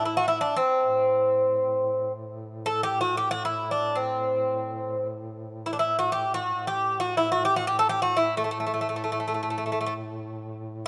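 A picked Greek bouzouki carries the melody up front, its doubled strings ringing bright and metallic, with some courses doubled at the octave. It plays between A3 and A4 from the start until 9.9 s. Beneath it, a mellow duduk holds a low drone on A2, close-miked and played in a folk style with vibrato and scooped notes. The duduk sits much lower in the mix and carries on alone until the clip ends at 10.9 s. This melancholic, hypnotic Turkish fragment, cut from a longer piece, sits in a lush hall reverb within a rough home demo mix.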